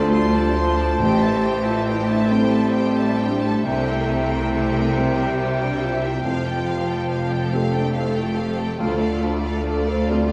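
Moving and sorrowful, this rubato cinematic passage in 6/8, cut from a longer piece, carries a focused, close violin section melody with vibrato over a bright solo clarinet, an airy, hollow, distant flute and a second violin section sliding with expressive portamento, while smooth violas, intense cellos and lush double basses sit beneath, a mellow French horn section holds chords, a very quiet grand piano lets its action noise and long sustain show, and calf-headed timpani on medium mallets enter at 1.0 s and return at 8.8 s, the whole set in a wet scoring-stage reverb.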